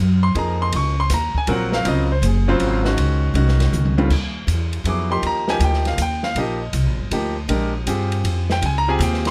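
An upright bass opens this short modal jazz excerpt in 3/4 at 160 BPM with a swung feel, its woody, thumpy gut-string pizzicato soon joined by a clear, intimate grand piano with audible action noise and a dark, boomy drum kit whose fill at 3.7 seconds ushers in Eb major on an Ebmaj9 before a shift to Dbmaj9 at 8.6 seconds, all captured up close and dry for a hypnotic, open mood.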